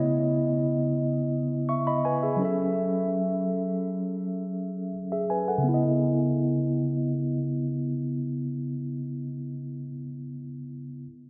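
A mellow, clean tine electric piano plays alone and up front through analog delay, moving from C#m9 to F#m7 and back to C#m9 at 5.7 seconds in this sensual, late-night R&B fragment of a longer piece, set at 83 BPM in C# minor and soaked in a lush hall reverb with a low-pass filter that gives the mix a dreamy haze.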